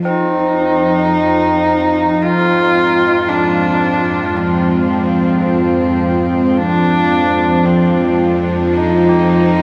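A clear, husky horsehead fiddle carries the melody up front with light vibrato and portamento, its earthy tone touched by delay, in this dark, cavernous ambient drone fragment. Beneath it a tense, string-like bowed drone hums with phaser and vibrato, while soft, solemn tubular bells ring arpeggios far back through their own delay. A deep, moody pad with chorus slips in at 2.2 s, and the whole sits inside a huge, wet reverb with a dark production.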